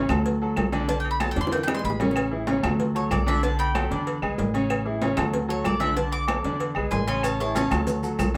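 A picked, double-strung bowl-back mandolin solos from the opening over an up-front, brilliant concert grand piano and a growly, thumpy pizzicato upright bass in this sunny, danceable salsa excerpt at 189 BPM in A major, cycling through D, Bm7, E7 and Amaj7. From 0.1 seconds, ringing metal-shell agogo bells and timbales, close and dry low-tuned cowbell and bongos, high-tuned vintage congas and woody, saturated claves in the background drive the groove, with a drum fill at 1.4 seconds. Grainy, mellow maracas slip in at 7.2 seconds, all within the snug ambience of a small room where the band plays live together.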